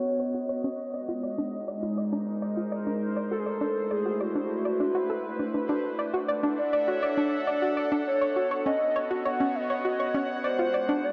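A straight 4/4 pulse at 101 BPM carries this glitchy, wistful IDM excerpt in D lydian, where a warbling, detuned tape-like pad holds up-front sustained chords, a soft, round pluck spins arpeggios through cassette-tape grit and tape echo, and a nostalgic lead with tremolo, vibrato and delay carries the melody, while filter sweeps on the pad and arpeggio through the first 5.7 seconds give way to a second section opening on Dmaj7, the whole mix set inside a huge, dark ambient reverb.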